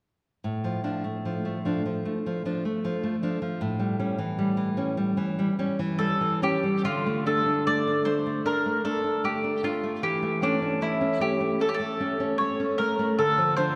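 A rubato pulse around 76 BPM in 4/4 gives this elegiac, melancholic romantic duo for mandolin and classical guitar a freely breathing, unhurried gait in D minor, heard as a fragment cut from a longer piece. The nylon-string guitar opens alone at 0.4 seconds with full-bodied, fingerpicked classical accompaniment in its low and middle range, the faint squeak of fingers on strings audible up close. At 6.0 seconds the mandolin enters up front with the melody, its picked double strings giving a round, warm tone in a modest middle register. The harmony moves from Dm/A through A7, then to D5 and A/E before settling back on Dm, with the music shifting into a second section just after the mandolin arrives. Both instruments sit close in the mix yet are bathed in a wet cathedral reverb with a long 4.2-second decay, recorded in a church or concert hall, and both play through to 13.8 seconds.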